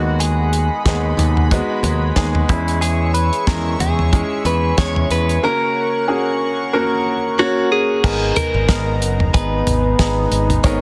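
Uplifting and hopeful, this piano-driven pop passage in 4/4 with a lightly swung sixteenth feel sets a clean, compressed, direct-recorded electric guitar melody with phaser over a woody, brilliant upright piano and a shimmering, retro chorused pulse-width pad that holds sustained chords. A punchy picked electric bass and a dry, damped 70s drum kit, which enters at 0.2 s with a fat snare, tight kick and dark cymbals, sit up front. The chords move from B6/D# through C#m/E and F# to G#madd9 at 8.0 s, all within light reverb and a small room ambience under a dense, heavily limited modern master, in a passage cut from a longer piece.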